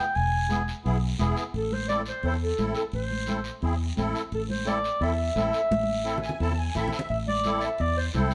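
A dark, classical-style solo clarinet sings up front with a roomy, distant glow over a passionate, fiery cumbia, backed by shimmering, reedy musette accordion that breaks into a fill at 6.1 s, a round, foam-muted fingered electric bass, a raspy guiro, and bright, damped congas, all in a live band feel moving from E to A minor in this short cut from a longer piece.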